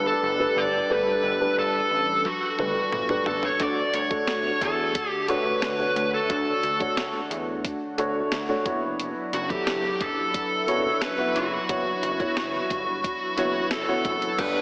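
This 1980s-style pop fragment, cut from a longer piece, feels nostalgic and urgent, moving in a straight 4/4 over chords that shift from Gadd9 to Dmaj7 and then to F#7sus4 at 8.7 seconds. A dark, fuzzed lead guitar sits up front carrying the melody, its distortion trailed by a slapback echo. A mellow grand piano with short sustain supplies the accompaniment, while a swirling, detuned analog pad holds sustained chords in the background through phaser and chorus, and a glossy chorused synth bass with a plucky filter anchors the low end. The clean 12-bit drum machine, with its thumpy kick and tape-tinged sampler character, enters at 2.3 seconds with a fill, its kit made up of crash, hi-hat, kick, snare and toms. A very quiet, bright electric guitar, recorded direct and compressed, touches a single riff note at 14.4 seconds, just as the fragment closes. The mix is bathed in a lush hall reverb that gives an arena-sized space, yet it also carries an AM radio sound.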